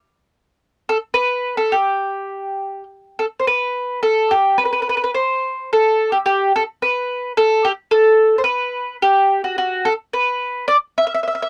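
In a loose, rubato waltz time, this romantic, lively Italian folk fragment from a longer piece features a solo acoustic mandolin, picked on double strings with a mellow, round tone, that sits up front from 0.9 s to 11.5 s and moves into a new section at 3.5 s, all captured in a dry, close 1970s-style studio sound with a touch of light reverb.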